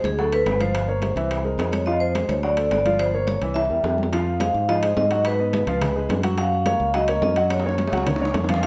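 Sultry and driving, this short Afro-Cuban jazz passage is cut from a longer piece and moves in a straight 4/4. A vibraphone played with medium hard mallets carries the melody with a metallic, ringing tone and a fast motor vibrato, set in plate reverb. Beneath it, a woody upright piano with long sustain supplies vintage, smooth accompaniment, while a bright fingered electric bass sits direct and up front. Congas with a thin skin and timbales with a close, dry metal shell drive the rhythm, and tight, high-tuned bongos join from 0.2 seconds, sounding distant in the background. A drum fill at 3.6 seconds leads into the second section, and another arrives at 7.5 seconds, as the harmony shifts from dominant and half-diminished chords toward a Gbmaj7. The whole mix sits in a moderate large studio room and carries the worn, warbling pitch drift of old cassette tape.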